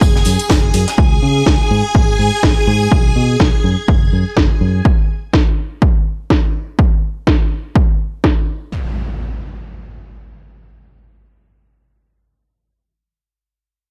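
Cut from a longer piece, this uplifting, feel-good piano house passage opens in a small room with a punchy, overdriven electronic kick up front and a house drum kit of cracking snare and metallic hats, all under a filter sweep. Only at the very start, a faint, airy tambourine and snare drum, a very quiet tambourine and a cloudy, blurred granular cloud pad drift in the background. A shimmering, vintage string machine holds sustained violin chords while a dark, round fingered electric bass pumps with its own filter sweep, both falling away by about 4.9 s. The swung drums carry on until 8.3 s, before an electronic impact lands at 8.7 s and rings until 11.9 s.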